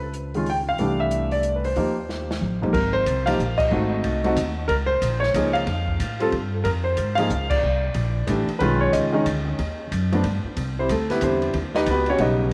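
Swinging and relaxed, this short jazz piano trio excerpt moves at 184 BPM in 3/4 with a swung eighth-note feel, centred in Ab major. The concert grand carries the melody up front with an intimate, natural tone, deep bass and audible action noise, touched by tape echo. Beneath it, the pizzicato upright bass sounds woody and thumpy on steel strings, while the acoustic drum kit, with dark cymbals, a medium-tuned snare and a boomy kick, sits further back in a small room. A drum fill at 2.1 seconds leads into a passage marked by band accents, and the harmony drifts through colourful added-ninth, altered and suspended chords before a brief break. From 10.6 seconds the piano takes a solo over rich major-ninth and altered dominant harmony, all set in a moderate echo-chamber reverb.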